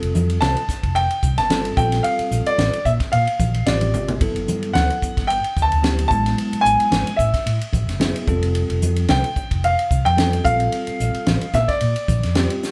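A boxy baby grand piano sits up front carrying the melody high in its range, over a bell-like tine electric piano comping in clean, direct tones and a fretless bass with a warm, amped tone. A tight funk kit with a high-tuned snare and snug kick drives the slick, funky electric jazz fusion groove at 111 BPM with a light sixteenth-note swing, marked by a drum fill at 3.5 seconds, while thin-skinned, damped congas patter in the background. The band plays live in one room with moderate studio reverb, moving through lush chords such as Fadd9, Gmaj9 and Bbmaj9 in this short cut from a longer piece.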